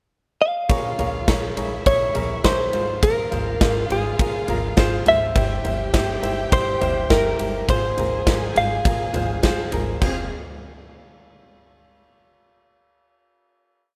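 A stomping four-on-the-floor pop beat from a huge, punchy arena drum kit with bright cymbals drives this bittersweet, dramatic piano-driven pop piece, where a clear upright piano chops close-voiced eighth-note chords over a woody pizzicato upright bass, a clean, compressed electric guitar picks a motif-based melody through analog chorus from 0.4 seconds, and a lush, distant violin section sings long high lines with vibrato and portamento in the background before everything settles onto a final F minor chord at 10.0 seconds in a rough home demo mix with light reverb.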